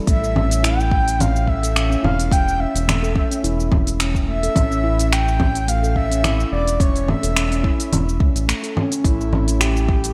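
Hypnotic and warm, this organic downtempo excerpt at 107 BPM pairs a ringing handpan playing delayed arpeggios with a breathy, flute-like synth lead carrying the melody through lush chorus, vibrato and digital delay, all over a round, dark analog bass with tube saturation and sidechain pumping, a deep layered electronic kick that drops out from 8.5 to 9.0 seconds, and an up-front kit of congas, finger snaps, smooth hi-hat and shaker in gated reverb, bright 1980s-style digital production gleaming over the whole.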